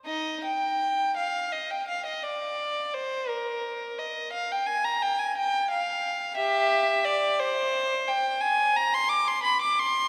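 Solemn yet flowing, this short passage from a longer baroque-style suite movement is played by a single unaccompanied violin. It moves at 58 beats per minute in dotted quarters, in 6/8 time, with a rubato feel that lets the line breathe freely. The bowed violin sits up front, with a rich, reedy gut-string tone and light vibrato in a period style, ranging from Eb4 up to D6. It plays alone from 0.1 to 10.1 seconds, tuned to A4 = 445 Hz. A church reverb with a 3.4-second decay surrounds the instrument, and the room itself is heard from further back, giving the solo line a spacious, resonant setting.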